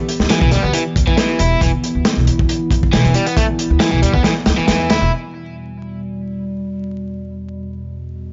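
A warbling, nostalgic tape-like pad with chorus and sidechain pumping opens this funky, swaggering breakbeat excerpt, quickly joined by a crunchy, saturated breakbeat kit with a punchy kick, a thumpy pizzicato upright bass on gut strings and a bright, overdriven guitar riff through tape echo, with vinyl crackle beneath, before the kick drops out at 4.2 seconds and the pad sustains alone from 5.1 to 8.3 seconds.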